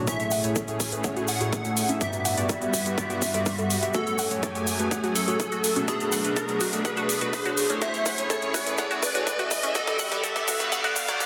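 Progressive house build-up with a dreamy, expansive mood, moving through a chord cycle of Amaj7, Gmaj7, F#madd9 and Bm7 that returns to Amaj7 and Gmaj7. A lush, detuned supersaw pad holds sustained chords while a retro, glossy polysynth plays chorused stabs through phaser and digital delay, its filter sweeping across the whole passage; both breathe with sidechain pumping. A catchy, punchy unison lead carries the melody, and a glassy, crystalline wavetable pluck sits in the background with sweeping arpeggios. Overdriven electronic drums, a punchy kick and metallic hats, are joined by a grainy, close tube shaker, and a drum fill runs from 3.9 seconds onward as an electronic riser sits underneath in the background. The dense, heavily limited master and wet digital room reverb make this cut from a longer piece sound dense and roomy.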